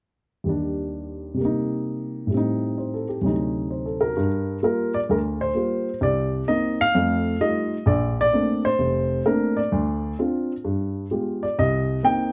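A dark, mellow baby grand piano opens at 0.4 seconds and plays alone throughout this short jazz fragment, cut from a longer piece, in G minor at 130 BPM with a swung 4/4 feel. The mood is late-night and smoky, the piano sitting up front with an intimate, natural tone, short sustain and audible action noise. Its range spans from F1 up to G5, set in light reverb. The opening passage moves through Ebmaj7, Cm7, Am7b5 and D7b9, and a new section begins at 4.2 seconds on Gm7, passing through Cm7, F9, Bbmaj9, Dm7 and G7b9 before settling on Cm7. The piano stops at 12.3 seconds.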